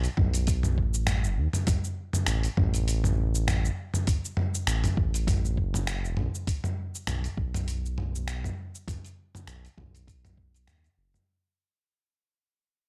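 A round, deep analog bass with tube saturation opens alongside a dusty, sampler-style soul kit of finger snaps, hi-hat, shaker and toms, joined at 0.2 seconds by a thumpy electronic kick, setting up a wistful, relaxed sunset chillout groove at 100 BPM with a light 16th-note swing, its dry, gritty sound captured up front before fading out from 4.9 seconds to the cut at 11.3 seconds.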